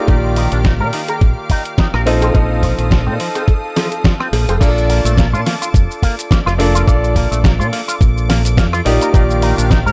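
Dark, lightly reverberant production frames this feel-good, groovy nu-disco cut at 106 BPM in Bb major, where a thumpy, up-front electronic kick and a gritty sampler-style soul kit with a fat snare drive a swung groove beneath a fingered electric bass with an envelope filter, a clear grand piano carrying 12-bit sampler grit, sidechain pumping and tape echo, a twangy, clean picked electric guitar riff with envelope filter and analog chorus, a lush, airy, detuned unison pad holding sustained chords, and a cowbell tucked in the background from 1.1 to 4.6 s, just as the drop lands at 4.6 s.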